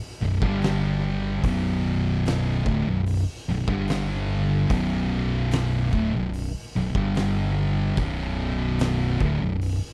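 A slow, straight 4/4 pulse at 73 BPM drives this hypnotic, sludgy stoner and doom metal fragment in B minor, cut from a longer piece, where a G5 to Bm change cycles through its roughly ten seconds. Two thick fuzz guitars share the distorted riff, one dark and set in the background, the other up front with a warm tone, while a fingered electric bass adds a bright, growly overdriven low end. From 0.4 seconds an oversized low-tuned acoustic kit of kick, snare and hi-hat lands with a punchy kick and fat snare in a pumping stone room, all under a light reverb.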